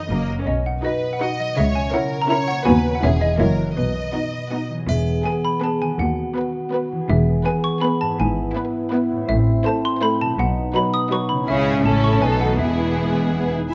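A woody, dry xylophone struck with rubber mallets leads this quirky, whimsical film cue in 3/4, sharing the melody with a rich, vibrato-laden violin section while a warm second violin section adds a gliding, expressive line, a ringing concert harp plays arpeggios, a distant viola section fills the accompaniment, and focused cellos and clear double basses carry the bass, until a mellow French horn section enters with soft sustained chords at 4.9 seconds alongside a brief, dry triangle, the whole captured with detailed microphones and light reverb.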